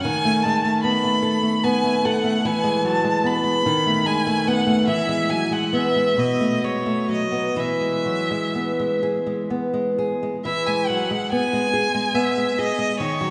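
A bowed violin and a fingerpicked nylon-string guitar sound together from the very start of this lyrical, serene romantic duo, which is cut from a longer piece and flows in a lilting 6/8 with free, rubato timing. The focused violin carries the melody high in its range with vibrato, while the bright, small-bodied guitar supports it with accompaniment that moves through B7/D#, E and B5 chords. Both players sit up front within a wet church reverb that gives the performance a spacious, hall-like glow, and the opening phrase returns at 10.5 seconds.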